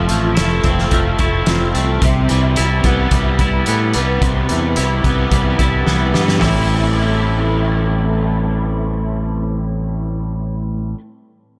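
A bright, direct fingered electric bass sits up front in this hazy, dreamy shoegaze and dream pop excerpt in A minor at 109 BPM, moving from Fmaj7 to Cmaj7 before settling on Am7 at 6.4 seconds. Two picked electric guitars carry the riff: one overdriven and thickened with ensemble chorus, the other clean, compressed and twangy, treated with reverse reverb. A loose acoustic drum kit with a fat snare, punchy kick, hi-hat and toms fills a pumping studio room, plays a fill at 5.9 seconds and drops out at 6.5 seconds, all framed by light reverb and small room ambience.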